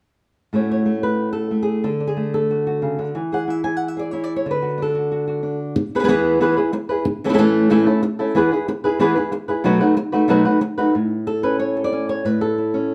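A solo flamenco guitar carries this festive, proud piece alone from 0.5 to 12.9 seconds, fingerpicked on fresh strings with a touch of finger squeak. It sits in A major at a brisk 184 BPM in a straight 4/4, tuned slightly low to A4 = 438 Hz, and ranges from A2 up to G#5. The harmony moves from an opening A6 through D and E, returns to A, and then leans on a B7 before settling back on A. The guitar's acoustic tone is up front and warm, set in a wet studio reverb that places the listener further back in the room. The passage is cut from a longer piece, with a new section beginning at 5.8 seconds and a short closing stretch from 10.9 seconds.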